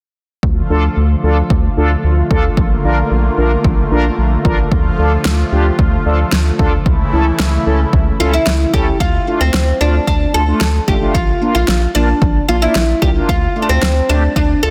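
Synth-pop in D minor at 112 BPM, cool and driving, cut from a longer piece: a punchy, overdriven deep house drum kit and a round, deep analog bass sit up front beneath fat, wave-folded analog synth brass accompaniment with chorus, while a nasal, detuned brassy analog pad with chorus holds sustained chords until 9.0 s and a woody, plectrum-plucked oud with double strings carries the melody from 8.2 s, set in light digital ambience and a dense, heavily limited modern master.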